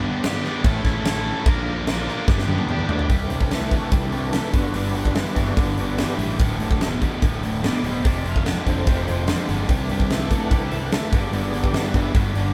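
A double-tracked, overdriven stack guitar drives a bright picked riff up front in this swaggering, confident classic rock excerpt at 146 BPM in a straight 4/4. Beside it, a huge arena drum kit pumps in a hall-like room, with a punchy kick, fat snare, bright cymbals and toms, and a drum fill at 2.3 s. A growling fingered electric bass joins at 0.6 s and sits in the background, its direct-and-amped tone roughened by overdrive. An overdriven tonewheel organ holds thick, gritty sustained chords through a slow rotary speaker with chorus vibrato and audible key click, then takes a solo from 3.1 s that stays in the background of the mix. The harmony moves through G, A, Bb, C6, Dsus4 and F, and the band plays live together in a moderate stone room.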